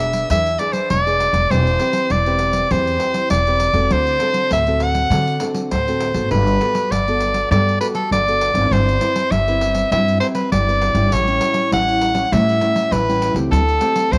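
Festive and playful, this samba and choro excerpt puts a bright soprano saxophone up front, singing the jazz-style melody with vibrato and a soft attack. Beneath it, a dark, full-bodied nylon-string guitar is fingerpicked in classical fashion, with audible finger squeak, over a woody, growly pizzicato upright bass and a jingly, vintage-sounding pandeiro that joins at 0.1 seconds. Light reverb and studio ambience frame the harmony as it moves from E7 through Gmaj9 and A7 to a closing D7sus4.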